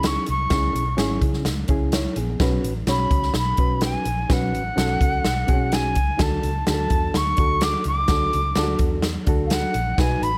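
A silver concert flute carries the melody throughout this short excerpt of uptempo 1960s-style soul, its tongued notes and vibrato sounding distant, sitting between F5 and D6. Beneath it, a reedy, worn electric piano supplies accompaniment through its built-in speakers, lightly overdriven and slightly out of tune. A vintage fingered electric bass, foam-muted and amped, adds a dark, round low end ranging from G#1 to C#3. A swinging big-band drum kit plays hi-hat, kick and snare with a punchy kick and a medium-tuned snare, sitting up front with a polished, hall-like sound. At 127 BPM in straight 4/4, the danceable, warm groove moves from C#m to Bsus2 at 2.4 seconds and to D at 6.2 seconds, all within a small room.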